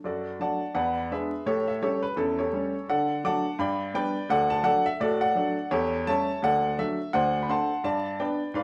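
Stride piano jazz at 169 BPM in D major, this exuberant, swinging 8.6-second fragment from a longer piece features a solo upright piano with a clear, woody tone, audible action noise and long sustain, set in a wet studio reverb with vinyl crackle as it moves through a progression from D/F# through E7, A7 and G.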